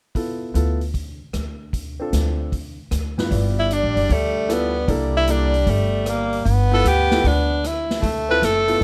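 A swinging 4/4 pulse drives this playful small-group jazz excerpt, with a big-room drum kit of hi-hat, rim click, medium-tuned snare and punchy kick alongside a clear, intimate grand piano whose action noise is audible, and a woody pizzicato upright bass sitting up front from 0.5 seconds. At 3.3 seconds a soft-attack tenor saxophone with vibrato enters on a second line, and at 3.6 seconds a bright, breathy tenor saxophone takes the melody with light vibrato and scooped notes, standing as the loudest voice in the close, dry mix. The harmony moves through Dm7 and Dm69 before shifting to G13 and C13 in the second half.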